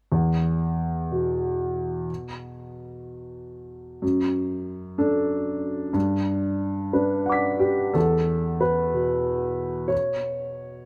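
Neoclassical minimalist piano in E dorian, this short cut from a longer piece moves at a slow 61 BPM in 6/8, with a rubato feel that gives it a wistful, melancholic air. A single dark upright piano carries everything alone from 0.1 to 10.9 seconds, ranging from E2 up to B6. Its tone is mellow and woody with a boxy character, and the audible action noise and up-front placement make it feel intimate, as if the listener sits beside the instrument. Long sustain lets the harmonies ring, moving from an open E chord through D over F# and Gmaj7 before returning to E at 8.0 seconds, where a second section begins. Light reverb surrounds the piano, and a faint mains hum lingers beneath the recording.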